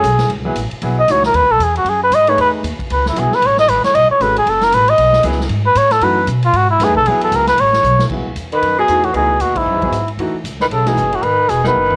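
Modal jazz with an intense, spiritual mood, heard in a short cut from a longer piece, swinging in 4/4 with a softly reverberant home-cassette sound. A veiled, breathy cup-muted trumpet sits up front with gentle vibrato, soloing over suspended chords for the first 8.1 seconds. It is backed by a clear, short-sustained grand piano with tape coloring, a woody pizzicato upright bass, and a big-room drum kit with a boomy kick that adds fills, while a smooth-topped tenor saxophone, also tape-tinged, enters as a second line at 8.5 seconds just before the band hits an accent at 9.5 seconds.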